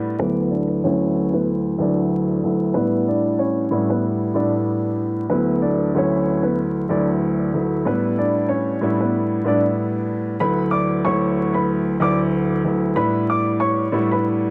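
A lightly swung sixteenth-note feel in 4/4 sets an unhurried, nodding hip hop groove in this short cut from a longer piece, nostalgic and soulful in mood. A dark baby grand piano carries the accompaniment from the very start, sitting up front with a mellow, vintage tone, long sustain and the soft grain of cassette tape. Just after, at 0.2 seconds, a dark upright piano takes the melody higher up, its woody, smooth voice ringing out at length before it stops at 14.2 seconds. The harmony rocks between D6 and A9sus4, and a filter sweep colours the opening stretch until 10.4 seconds, where a new section begins. Vinyl crackle, light reverb and an intimate small-room ambience wrap the pair in a dusty, lo-fi glow.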